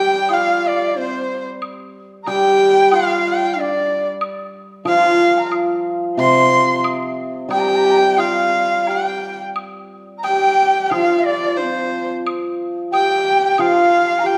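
Bathed in wet recital-hall reverb, this wistful, graceful excerpt of Chinese traditional chamber music moves in a rubato 91 BPM 4/4, tuned to A4 = 438 Hz. An intimate, up-front erhu carries the melody with light vibrato, soft attacks and portamento, while a husky, horsehair-strung horsehead fiddle and a distant, buzzing bamboo dizi shape second lines. A shimmering hammered dulcimer rings in the low accompaniment, and a close, bright woodblock sounds from 0.3 s to 13.7 s.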